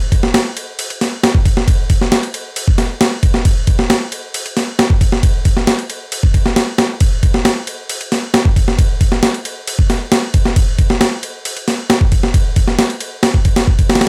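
A straight 4/4 breakbeat groove at 135 BPM drives this funky, gritty fragment, carried entirely by a sampler-style drum kit of kick, snare and ride cymbal that plays from 0.1 to 14.1 seconds. The break sounds compressed and pitched up, with a thumpy kick, a medium-tuned snare and a tape-warm grit. It sits up front in a dry mix with little reverb.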